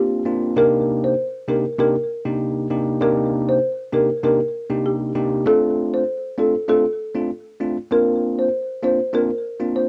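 Afrobeats at 98 BPM in C dorian, mellow and hypnotic, cut from a longer piece where a woody, rustic folk marimba played with medium mallets carries the melody between G4 and C5, its dry, boxy tone colored by cassette tape. Beneath it, a bell-like tine electric piano sounds bright, clean and up front as it accompanies from C3 to G4 through Bbadd9, Cm7 and Dm7 before returning to Bbadd9 at 7.9 seconds. Both parts play throughout, and the home cassette recording carries a light reverb.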